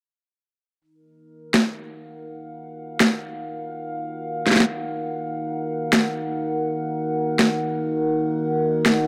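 A cracking, overdriven electronic snare sits up front from 1.5 seconds, layered and produced, driving this dark, heavy half-time drum and bass fragment at 164 BPM in Eb minor, tuned to A4 = 444 Hz. Alongside it, from 0.8 seconds, a deep, moody analog pad holds a sustained Eb minor chord, its square, sawtooth and triangle tones, sub octave and moving notch thickened by chorus and shaped by a filter sweep, with a slow attack and long release. A moderate spring reverb places the sound in its space.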